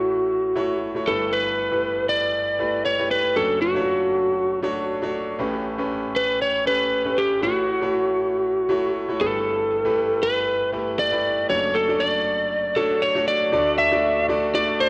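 Romantic and glossy, this pop fragment cut from a longer piece moves at 118 BPM in D major with a gentle 16th-note swing. A lightly driven, slightly broken-up electric lead guitar carries the melody up front with a picked, compressed tone and a cassette-tape coloring. A brilliant concert grand with deep bass accompanies it through F#m7/A, G69, Dmaj7/F# and A9 changes before settling on D at 13.5 seconds, all washed in a lush hall reverb with the character of a home cassette recording.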